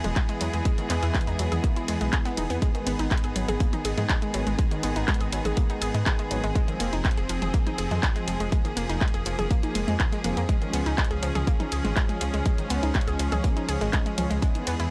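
A dry, gritty sound with transformer saturation and a cassette-tape grain sits in a small room, framing this dark, dramatic melodic techno piece, cut from a longer track, at 122 BPM in a straight 4/4. A punchy electronic kick drum sits up front from 0.2 seconds, joined by a house drum kit of handclaps, bright hi-hats, ride cymbal and toms, whose hats, cymbals and toms pump with sidechain, while a modern acoustic studio kit with a medium-tuned snare and rolled-off top lies barely audible beneath. A deep, rumbling detuned saw bass, saturated and beating, also sits up front and pumps under the groove. Clear, biting string-section chords with light vibrato and an earthy bowed tone hold sustained harmony, as a bright, wave-folded unison pluck spins arpeggios through analog delay, both pumping with sidechain. In the background, a brassy, bold analog pad with chorus, vibrato and a filter sweep adds soft-attack stabs through analog delay over chords moving from E to G#m, Fm and C#.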